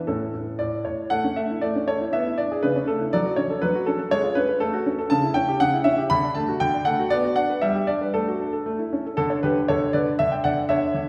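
A wet concert hall reverb, with a 1.8-second tail, surrounds a clear, natural baby grand piano that sits up front with a short sustain. This fragment of a playful, elegant classical-period sonatina moves at 119 BPM in a straight 2/4. The solo piano spans A2 to B5, beginning in A major, turning toward D major at 5.1 s, and settling on a Dmaj9 chord at 10.2 s.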